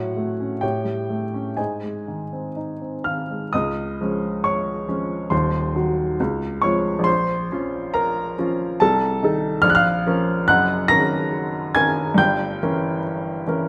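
A rubato 2/4 pulse at 59-72 BPM carries this hopeful, lyrical romantic character piece for solo upright piano in Db major, its woody, intimate tone and audible action noise captured up close in a moderate scoring-stage reverb, ranging from Eb1 to Bb6 as the harmony passes from A7 to Ab, settles on Db at 3.5 seconds, then drifts through Bbm and Gb6 to a closing Gdim7 in this 13.7-second passage cut from a longer piece.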